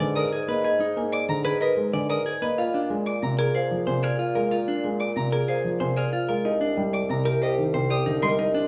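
Heard in a moderate recital-hall reverb, this hypnotic, urgent excerpt of minimalist classical pattern music moves at 186 BPM in 6/4, with a woody, percussive marimba carrying the melody over a dark concert grand piano with audible action noise, clean, compressed electric guitar arpeggios up front, a distant, mellow bassoon bass line, and a smooth, bowed violin, played by a single player, adding arpeggios from 0.2 seconds, as the harmony passes from Abmadd9 to Bb7 and then Cm7.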